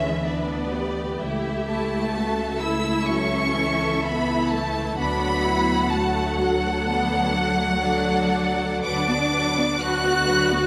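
A serene, slow romantic movement for string orchestra at 63 BPM in D major, heard from 0.0 s as a full ensemble: a lush, up-front violin section carries the focused, smooth-topped melody over a rich second violin line, while a close, vibrato-laden viola section fills the accompaniment and an even cello section joins a distant double bass section on the bass, all flowing with rubato through E7/D, A7/C# and D to Bm/D in the moderate reverb of a scoring stage, in a short passage cut from a longer piece.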